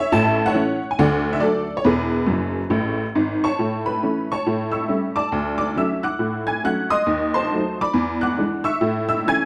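Swinging along in a lively stride-jazz lilt, this playful, exuberant cut from a longer piece features a solo honky-tonk upright piano, detuned, jangly and boxy with short sustain and sitting up front, spanning its deep bass to high treble, tossing in a fill at 2.3 seconds before moving into a new section at 3.6 seconds, all set in a moderate club reverb within a dark production.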